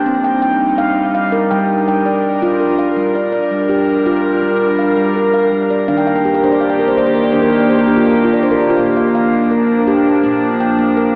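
A ringing stainless-steel handpan, played up front with soft fingertips, spins gentle arpeggios through this hypnotic, meditative world piece, adding a fill between 5.9 and 8.8 seconds under tape echo and shimmer reverb. A morphing, full-bodied wavetable pad with a slow attack and long release holds sustained chords alongside it, moving from Cm to Gm, then Eb and Bb, with chorus and shimmer adding depth. The short cut from a longer piece sits in a wet small room and carries the lo-fi character of a home cassette recording with an AM radio sound.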